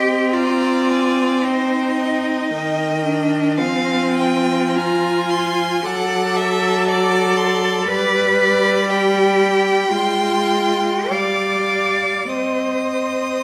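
In a free, rubato 4/4 at 49-61 BPM, this solemn, yearning slow romantic movement for string quartet in C minor, cut from a longer piece, sets a clear, close first violin melody high above a smooth, distant second violin line, a warm viola accompaniment and a rich, focused cello bass, all four bowed with vibrato by single players in a recital hall reverb, as the harmony moves from C minor through F minor, D7 and G before settling back on C minor at 12.3 seconds.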